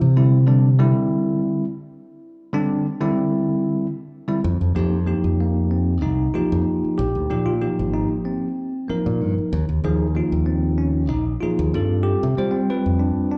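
A straight 4/4 pulse at 94 BPM drives this bright, slick slice of electric jazz fusion, cut from a longer piece. A punchy fingered electric bass opens with a solo over Cadd9 for the first 4.4 seconds, then carries the low end through suspended harmonies such as F9sus4 and G9sus4. A clean, bell-like tine electric piano with slapback echo comps just behind it from 0.2 seconds, both sitting up front in a live club sound heard through the venue's PA with light reverb.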